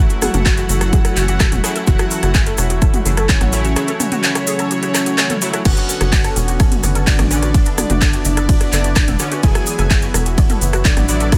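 A dry, close mix with a faint mains hum underneath opens this dramatic, melancholic slice of melodic techno, cut from a longer piece and moving at a steady, straight 4/4 pulse. A punchy, up-front electronic kick arrives at 0.5 seconds, joining a house drum kit with metallic hats, handclaps, rim clicks, ride, crash and toms, while a grainy acoustic cabasa sits in the background. Underneath, a tight, saturated sequencer bass drives the low end with a fast, decaying filter pluck, pumping against the kick. A thick, detuned unison lead carries the melody with vibrato and dub echo, shadowed an octave above by a smooth supersaw second line, as a lush, airy pad holds sustained chords through F#m7, Bmadd9 and Esus2. A warbling, lo-fi pluck with cassette-tape grit spins arpeggios in the background, and an edgy sync-sweep polysynth cuts through with nasal, chorused stabs.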